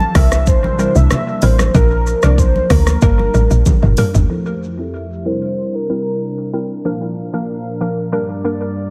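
Afrobeats in F major at 94 BPM, this sunny, breezy excerpt from a longer piece moves in a straight 4/4 over a C7, Bb, Gm and Fmaj7 progression. A punchy, woody log drum bass sits up front beside a deep house drum kit with a deep kick, hi-hat, rim click, shaker and toms, while very quiet congas add a damped, thick-skinned acoustic touch. A velvety, detuned sawtooth lead with vibrato carries the melody until 6.5 seconds, and a bouncy, warbling square-wave pluck with tape echo fills out the accompaniment. Beneath them, a hollow, flute-like pad holds soft, nasal sustained chords. A drum fill starting at 3.7 seconds closes the opening half, and at 4.3 seconds the drums, bass and congas drop away as a filter sweep runs across the rest, leaving the echo-heavy, lightly reverberant synths to float on.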